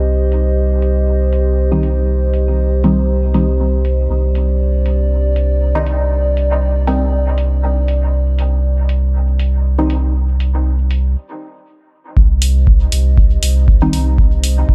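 Riding a 119 BPM 4/4 groove with a light 16th-note swing, this meditative, cavernous dub techno excerpt in C minor sits on a single Cm chord, with a clean, smooth sine sub bass up front and a dark analog pad of detuned, slow-attack chords breathing under chorus and sidechain pumping. Muted, filter-plucked dub chord stabs drift through phaser and dub echo until 10.0 seconds, while overdriven, layered electronic hi-hats, softened by a low-pass filter, tick along from 0.3 seconds. After a break, a dry, tape-warm kick drum lands up front at 12.2 seconds, and light reverb sets the whole in a dim space.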